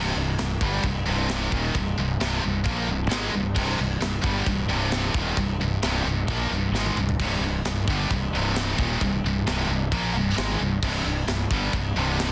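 Heavy metal in C minor at 132 BPM, this aggressive, heavy excerpt stays on a C minor chord as two picked high-gain guitars drive a distorted riff, one bright and up front, the other sitting in the background, over a growly, fuzz-laden fingered bass that sits forward in the mix. A tight metal drum kit joins at 0.4 seconds with a tight soft-clipped kick, medium-tuned snare, toms and bright china and crash cymbals, breaking into a fill from 6.7 to 7.2 seconds. The sound is dense and heavily limited, set in a small room reverb.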